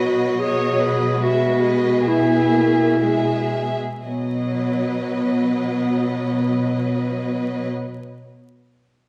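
Lyrical and tender, this brief cut from a slow romantic orchestral movement in B major drifts in a rubato 3/4 at 57-74 BPM, slowing over its first 4.0 seconds as the harmony moves from B to E/B and home to B at 4.0 seconds, with an expressive, vibrato-laden violin section singing the melody over a second violin line and a clear, softly attacked clarinet, a warm, smooth-topped viola accompaniment, and an even, up-front cello bass holding B2, the ensemble heard from further back in a reverberant recital hall beneath vinyl crackle.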